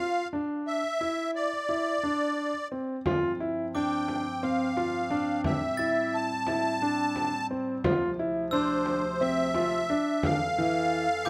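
Close, detailed microphones in a moderate recital hall give this brief cut from a longer contemporary chamber piece an intimate presence, with a 1.3-second reverb tail around the more distant players. Set in an uneven 7/8 at 176 BPM in eighths with a straight feel, the mood is restless and playful. A reedy, shimmering musette accordion carries the melody up front from the start, alongside a clear grand piano playing arpeggios with its action noise audible. At 3.0 seconds a mellow woodwind section enters with sustained chords and light vibrato, sounding distant and roomy. A deep frame drum played with hard hands arrives at 3.1 seconds, and a bell-like glockenspiel with brass mallets adds sparkling texture in the background from 3.7 seconds. The harmony moves from Dm through Cadd9, G7sus4, Am7 and Dm7 before settling on Fmaj7.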